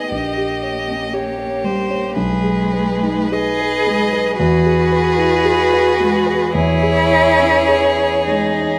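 Unfolding in a free, rubato 4/4, this brief passage from a slow romantic movement for piano quartet feels serene and warm. A focused, vibrato-laden violin carries the melody above a second violin's clear, even line and a cello that shapes its expressive phrases with soft attacks and portamento. Up front, the concert grand supplies a dark, mellow accompaniment with deep bass, and the quartet sits in the reverberant bloom of a recital hall.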